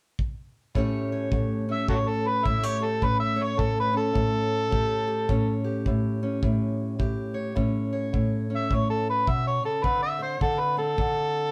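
A laid-back, rollicking acoustic country blues number at 106 BPM in 4/4 with a swung eighth-note feel, set in A mixolydian, opens with a tight, natural kick drum played with brushes at 0.2 seconds, joined by fingerpicked steel-string acoustic guitar holding an A7 chord before moving to D7 near 9.8 seconds, while a gritty, amplified harmonica enters up front at 1.7 seconds with light vibrato, tongue slaps and scooped notes in a jazz-tinged solo, all set in a moderate studio reverb heard from further back in the room in this cut from a longer piece.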